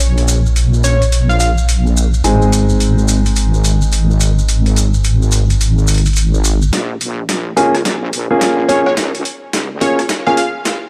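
Glitch hop with a gritty, funky swagger, this short cut from a longer piece rides a swung groove in 4/4. A heavy, wobbling bass sits up front, its saturated, detuned sawtooth tone thickened by chorus, while a natural-sounding grand piano plays stabs roughened by vintage 12-bit sampler grit and digital delay. Beneath them, a compressed, pitched-down boom bap sampler-style kit of hi-hat, rim click and overdriven high-tuned snare keeps time, joined by grainy acoustic maracas that drop out at 6.7 seconds. A punchy, catchy plucky unison lead, full-bodied and layered with a sub octave and a noise layer, flashes in briefly near the start and returns at 8.7 seconds. From 6.7 seconds a drum fill drives a build-up across the second section, all set in a light small-room ambience.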